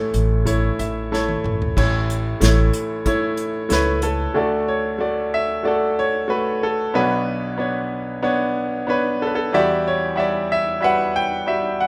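A bright, brilliant concert grand piano carries the melody up front with deep bass through this nostalgic, heartfelt acoustic folk-pop ballad excerpt in D major at 93 BPM, adding a fill from 0.5 to 1.8 seconds while an airy, polished unplugged drum kit played with bundle sticks, with dark cymbals and a punchy kick, adds a fill of its own and joins a woody pizzicato upright bass for the opening until about 4.3 seconds, after which the piano plays alone under light reverb over chords moving from D to Bmadd9 to Emadd9.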